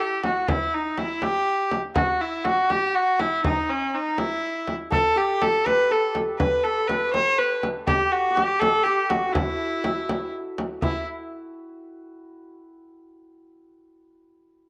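A clear, bowed kamancheh and a shimmering, hammered santur open this melancholic, hypnotic Persian modal piece, and a deep frame drum played with soft hands joins at 0.2 seconds. Set in avaz esfahan on E, in a straight 6/8 at 81 BPM, the up-front kamancheh carries an earthy melody with light vibrato and portamento, while the ringing santur plays a quieter second line that pauses briefly before returning. The kamancheh and drum stop at 11.1 seconds, leaving the santur alone in a wet spring reverb and small room ambience, as this cut from a longer work ends.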